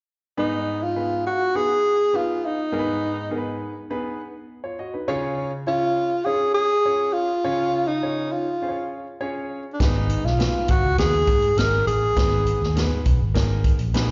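Passionate and urgent, this uptempo 1960s-style soul excerpt opens with a breathy tenor saxophone carrying the melody up front, its mellow tone marked by light vibrato and scooped notes, while a concert grand piano with deep bass supplies accompaniment, both touched by slapback echo. At 9.8 seconds a dark, round, foam-muted electric bass and a big-band drum kit with hi-hat, punchy kick and snare join in, as the chords move from G#m to C# and back. The sound is that of a live gig heard through the venue's PA, with recital hall reverb and a dulled top end, and it cuts off at 14.1 seconds.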